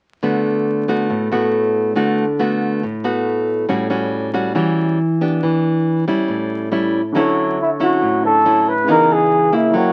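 Sunny and sophisticated, this short bossa nova excerpt, cut from a longer piece, moves in a straight 4/4 feel. A fingerpicked nylon-string guitar sits up front from the start, its acoustic, classical tone carrying the accompaniment through chords such as D6, A13 and Em7. At 7.1 seconds a concert grand piano joins in the background, natural and deep in the bass, as the harmony shifts to Dmaj9 and C#m9. Moments later, at 7.6 seconds, a breathy flugelhorn takes the melody up front, mellow and vintage in a jazz style, with light vibrato and scooped notes. Light reverb surrounds the parts, and the sound carries the crackle of a very old 78 rpm record.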